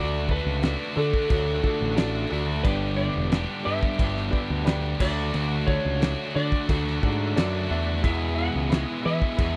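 Classic rock at 89 BPM in a straight 4/4, this confident, swaggering excerpt moving from D to G and back before landing on E sets a clean, slide-played lap steel melody with slapback echo over a distorted, double-tracked electric guitar riff, a growling overdriven picked bass, a cloth-damped, thuddy drum kit with a fat snare and dark cymbals entering at 0.3 seconds, a woody upright piano in the background and a very quiet, key-clicking tonewheel organ on slow rotary, all captured in a dry, close 1970s-style small room.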